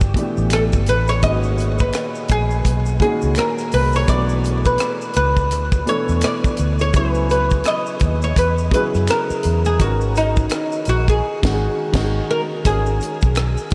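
Swung sixteenths in 4/4 give this late-night, soulful R&B and neo-soul cut a relaxed sway, driven by a tight funk drum kit with a high-tuned snare, tight kick, hi-hat, rim clicks and crash, while maracas and finger snaps sit in the background. An up-front, plectrum-plucked oud with double strings carries the melody through a delay, over woody upright piano chords thickened with lush chorus and a dark, round, foam-muted electric bass that stays punchy and forward. The band hits an accent from 11.2 to 12.7 seconds before the harmony settles onto G#m11, the mix soaked in a huge, dreamy reverb.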